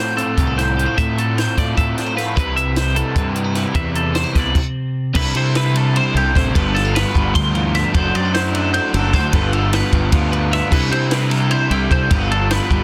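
In a straight 7/8 at 302 BPM counted in eighths, this wistful, intricate math rock and midwest emo excerpt in C major sets a bright, twangy twelve-string electric guitar playing arpeggios through spring reverb over a second, clean and compressed twelve-string guitar's warm accompaniment, an overdriven, lo-fi, double-tracked garage guitar riff and a round, fuzzy, overdriven fingered bass, with a dry compact cocktail drum kit entering at 0.2 s with dark cymbals, a high-tuned snare and a punchy kick, as Fmaj7 and Cmaj7 give way to a stop at 4.6 s before a passage from 5.2 s moving through C69, G9sus4, D9/F# and Gsus2, back to C69 and on to G7sus2, all in a close, dense and heavily limited modern master.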